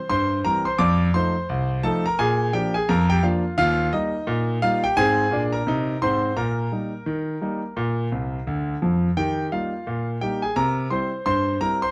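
Ragtime piano in Eb major, this playful, jaunty passage is a short cut from a longer piece, moving at 86 BPM in 2/4 with a 60% swing on the sixteenths. A single warm concert grand carries everything from start to finish, spanning C2 to D6 with a deep bass and a natural, up-front presence. The harmony opens on C7, then F7 and Bb7, before settling on Eb, Ab, Eb/Bb and Bb, returning to Eb and closing on C7. A piano fill arrives at 8.1 seconds and runs to 9.2 seconds. A moderate club reverb gives the instrument a modest sense of room, and the tuning sits at A4 = 441 Hz.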